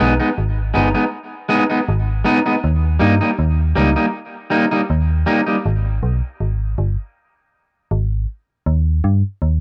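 A picked electric guitar, twangy and slightly broken-up, opens this deep, heavy reggae fragment alongside an up-front metallic FM bass with a fast attack and a decaying, mellow tone. The groove sits in four with a light swing on the sixteenths, moving from G#m to D# at 2.6 seconds. The guitar carries dub echo and a cassette-tape colour, and sits just as far forward as the bass. At 5.6 seconds the guitar stops and a break begins, leaving the digital bass playing alone over an open, chordless stretch until D# returns at 8.7 seconds. The whole thing has the close feel of a home cassette recording in a booth with moderate ambience, and it is cut from a longer piece.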